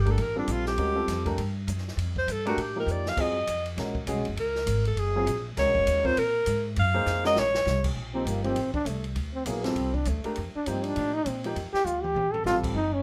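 Searching and hypnotic, this swinging modal jazz excerpt moves between Bbmaj9 and Gbmaj9 as a warm alto saxophone, up front with light vibrato and scooped notes, solos until 7.9 seconds and is followed by a vibrato-tinged trombone solo from 8.1 seconds, over a woody pizzicato upright bass, a mellow grand piano with long sustain, and an open small-room drum kit with dark cymbals, a boomy kick and a fill at 2.9 seconds, all in light reverb.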